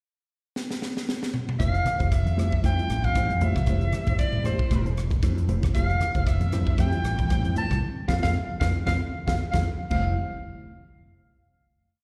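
A swung 16th-note samba groove at 115 BPM in 4/4 drives this short, soaring electric jazz fusion piece in F major, opening with a crisp, up-front drum fill before the band settles onto a single Fmaj9 at 1.6 seconds. A round, punchy fretless bass riff anchors the groove beneath low-tuned congas in the background, while a dark, compressed electric guitar with analog chorus plays upper chord shapes and a clean tine electric piano adds rootless, syncopated stabs and a fill just before the close. Over this slick bed, a breathy, whispered soprano saxophone with vibrato and scooped notes sings motif-based phrases through slapback and tape echo, and after a band accent the piece ends on a final chord at 9.9 seconds, heard through a venue PA in a recital hall with lossy compression artefacts.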